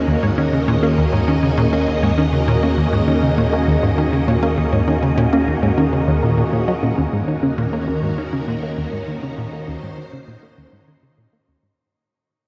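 Drenched in a dark, lingering shimmer reverb, this cosmic, mysterious slice of sequencer-driven space music sets a swirling, bright phased string machine holding sustained chords over a nasal, evolving analog drone and a punchy, funky plucky analog bass riff with analog delay, while a warbling, lo-fi dusty pluck spins arpeggios in the background and an airy, breathy wind-like tuned noise texture drifts far back, until from 7.0 s the arpeggios, the drone and the whole recording fade out as a filter sweep passes over the bass.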